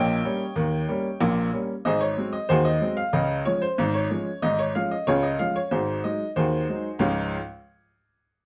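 Lively and cheerful, this ragtime piano excerpt moves at 93 BPM in a straight 2/4 feel and sits in D-flat major. A solo upright piano carries everything, its clear, woody tone placed up front and spanning from a deep Ab1 to G5. The harmony travels from Eb7 to Ab7, settles on Db over Ab, returns to Ab7, and arrives on Db at 7.0 seconds as a new passage begins. The piano stops at 7.4 seconds, and the recording sits in a moderate studio reverb. The production has a dark, warm character that frames the ragtime bounce.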